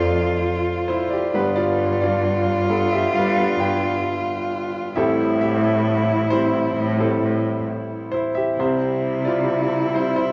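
In a straight, unhurried 4/4, this tender, intimate acoustic folk-pop ballad, cut from a longer piece, sets a bright, brilliant grand piano melody up front, its action noise audible, over chords moving from F to G, Am7 and C. One bowed cello sings an expressive second line with vibrato and portamento, sounding somewhat distant, while a second bowed cello carries the bass close and nasal, with light vibrato, soft attack and an airy, boxy sul tasto tone. All three parts play throughout the 10.3 seconds, bathed in the wet reverb of a church or concert hall.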